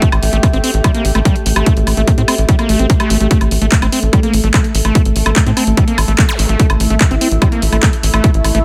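Psychedelic and driving, this psychedelic trance excerpt runs at 146 BPM in 4/4, tuned to A4 = 436 Hz and resting on an A5 chord. An overdriven, heavy kick sits up front beside a punchy sawtooth-and-square sequencer bass with tube saturation and a fast filter pluck, while an overdriven techno kit adds handclaps, hi-hat and woodblock. A squelchy, screaming acid riff with distortion, chorus and digital delay cuts through over a bubbling, resonant stepped-filter chord texture and a dark, warbly lo-fi pad, both pumping against the kick in the background, and a brief electronic zap flickers at 6.3 seconds in an otherwise dry mix.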